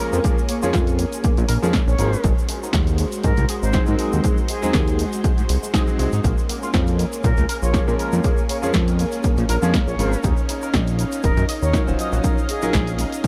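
A fat, saturated analog bass and a punchy electronic kick sit up front in this groovy, sensual nu-disco excerpt with a swung 16th feel, over a house drum kit of snare, hi-hat and shaker, a close, dry tube shaker, a twangy envelope-filtered electric guitar riff with lush chorus and diffuse delay, a brilliant grand piano with ambient delay, a thick, warbling unison pad pumping under sidechain with vintage 12-bit grit, and a reedy silver concert flute melody with vibrato and tape echo entering at 0.5 s, set in a light digital ambience.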